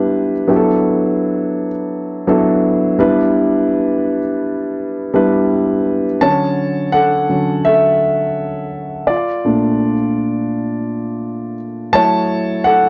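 A dark, mellow grand piano with long sustain sits up front in this lush, smooth soul passage cut from a longer piece, its vintage tone touched by slapback echo and light reverb in a dry, close 1970s-style studio sound as it plays with a slight swing over chords such as D69, Em7, Dmaj9 and Bbmaj7.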